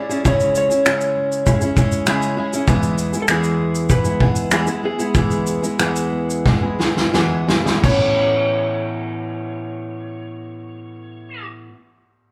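This sunny, heartfelt acoustic pop excerpt opens with a fingerpicked steel-string acoustic guitar, dark and full-bodied, carrying the accompaniment up front. Underneath, a very quiet classical nylon-string guitar adds soft arpeggios, while an electric slide guitar sings the melody with a slightly broken-up, compressed edge. A loose indie drum kit enters at 0.1 seconds with kick, fat snare, shaker, finger snaps and dark crash cymbals, its rolled-off top giving it a mid-forward, warm character. The harmony moves from C#m to E, and the performance slows from 2.7 seconds until a drum fill at 6.5 seconds leads into an Aadd9 at 7.8 seconds, shortly after which the drums drop out and the guitars ring on. Played live by a band in one room, the track is bathed in a moderate large studio reverb that lends an open, natural space.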